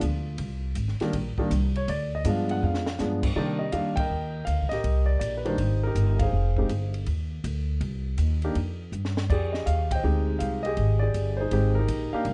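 A dark, warm production frames this moody, swinging jazz piano trio excerpt in minor: the concert grand carries the melody up front with audible action noise, deep bass and a touch of plate reverb, the woody pizzicato upright bass sits close beside it, and the dry cocktail kit, with its dark cymbals, high-tuned snare and punchy kick, adds fills at 2.6 and 8.9 seconds before the band strikes accents, first at 3.9 seconds.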